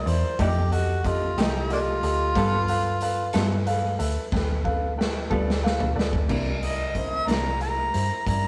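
Slow blues in 12/8 at 61 BPM, this rollicking, soulful fragment of a longer piece moves through F9 and G9 chords. A mellow harmonica carries a second line from the start, while a dark, foam-muted electric bass, clear vintage grand piano and clean, picked electric guitar with tremolo sit under a gritty, saturated garage drum kit with a boomy kick and pumping room sound, which plays a fill from 4.3 seconds. At 6.3 seconds the progression lands on C9 and the up-front harmonica, with light vibrato, tongue slaps and scooped notes, takes a jazz-style solo, all in a rough rehearsal-room recording with moderate stone reverb.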